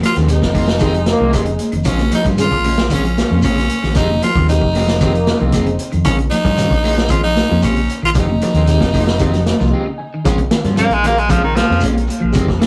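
Hypnotic and intense, this afrobeat cut at 114 BPM in Bb dorian rides on a saturated vintage drum kit, high-tuned congas, grainy shekere and woody claves, with a dark, round fingered bass, two slightly broken-up electric guitars playing arpeggios and twangy stabs, and a reedy electric piano with fast tremolo, while a raspy tenor saxophone with tape echo carries the melody, a mellow trombone section adds brief second-line figures, and after a break at 9.7 s a bright, punchy baritone saxophone takes a short solo from 10.8 s, all in a rough rehearsal-room sound.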